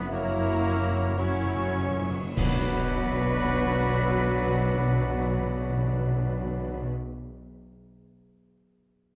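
Elegiac and melancholic, this short cut from a longer slow romantic movement for symphony orchestra unfolds in B minor at 48-61 BPM in 4/4, with a rubato feel that slows down through the opening 2.4 seconds. Muted violins carry the con sordino melody with lush vibrato, while a second violin line, violas, cellos and double basses fill out a dark, veiled string body beneath. An airy flute group, a bright clarinet, a warm oboe and a punchy bassoon add quiet woodwind lines, set against mellow sustained French horn chords, distant trumpet stabs and the ringing, thumb-plucked arpeggios of a concert harp. Timpani with medium mallets play a fill over an F#7 chord before the harmony resolves to B minor at 2.4 seconds. There, clash cymbals and concert bass drum join for a full-band accent that lasts until 3.5 seconds, and the cymbals and bass drum carry on to 4.5 seconds. A moderate scoring stage reverb surrounds the ensemble, and the harp rings on briefly after the rest of the orchestra stops at 6.9 seconds.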